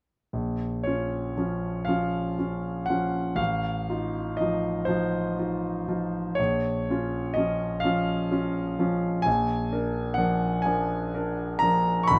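Classical romantic nocturne for solo piano in Bb minor, wistful and yearning, unfolding in a slow, rubato 6/8 at about 39-43 dotted-quarter beats per minute, its up-front concert grand sounding clear and natural with deep bass and long sustain inside a moderate studio reverb as the harmony moves from Bb minor through F7/A and back before turning to Bb7 near 9.3 seconds.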